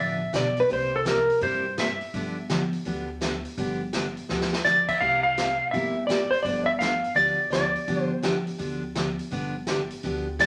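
The recording sits in a studio room with a wet reverb that gives it a glossy, roomy sheen, and it is cut from a longer piece of down-home, playful country western swing with a loping swung shuffle in four. Up front, a clean electric lap steel carries the melody with slide and volume swells, singing in phrases that rest and return around 4.6 seconds. Beside it, a full-bodied dreadnought acoustic guitar is picked steadily throughout, riding the bounce between G7 and C7. Beneath, a woody, thumpy pizzicato upright bass anchors the low end. A swinging big-band kit joins at 0.3 seconds, its punchy kick, medium-tuned snare, hi-hat and crash sounding natural, and a short drum fill near 4.3 seconds kicks the next phrase along.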